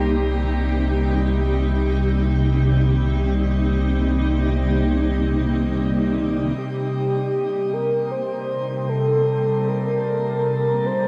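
Ambient in free time and C minor, this spacious, melancholic excerpt rests on a Cm7 chord, with a cloudy granular pad holding blurred, evolving sustained chords and an organ-like drone coloured by ensemble chorus and phaser running throughout the 11.1 seconds. A deep, round sub bass sits on C2 until 6.5 s, and at 6.6 s a velvety synth lead enters with a smooth melody between G4 and C5, carrying vibrato along with chorus and diffuse ambient delay. The production is dark, bathed in a moderate shimmer reverb.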